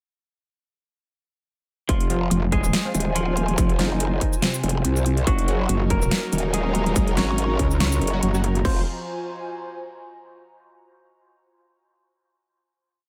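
Heavy wobble dubstep at 142 BPM in a half-time, lightly swung feel in F phrygian, chaotic and weighty, with a drop from 1.9 to 8.6 seconds moving from Fm to Gb6 before settling on a final Fm chord. A distorted electronic kick and a dry, up-front kit with a huge snare, metallic hats, shaker and crash drive two aggressive basses: a detuned, formant-filtered growl bass and an FM metallic wobble bass that bursts in briefly at 2.3 seconds and returns at 5.7 seconds to answer it, both with changing wobble speeds. Above them a twangy clean electric guitar repeats an octave riff through dub echo, while sparse, punchy orchestra-hit-like stabs with phaser and echo, a breathy, nasal pad pumping under sidechain, and a lush bowed string section from 5.3 seconds sit in the background.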